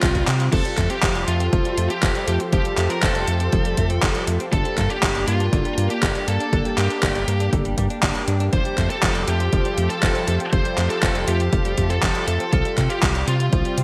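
Sunny and romantic, this straight-ahead italo disco excerpt rides a punchy, overdriven electronic kick and a gated 80s drum machine with crash, handclaps and hi-hat, opening on a drum fill at 0.3 seconds. A round, deep analog bass anchors the low end while a lush, detuned unison pad holds sustained chords through Fadd9, Gm and Csus4, and a bright, direct-recorded clean electric guitar picks compressed arpeggios in the background. Over it all, a distorted high-gain lead guitar with delay carries the melody, set in a bright 1980s-style digital production with hall reverb and a touch of vinyl crackle.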